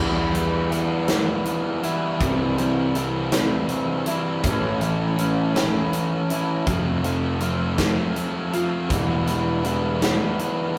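Quiet-loud alternative rock in 6/8 at 54 BPM, this angsty, cathartic cut from a longer piece sits in E phrygian, moving through Em, C, A and F before returning to Em. A bright, compressed fuzz guitar riff sits up front over growly, overdriven electric bass, while a big-room acoustic drum kit with a punchy kick and a medium-tuned snare enters at 0.3 s. Beneath them a very quiet, full-bodied dreadnought acoustic guitar picks arpeggios with audible finger squeak, and the rough rehearsal-room recording carries moderate reverb and warm saturation.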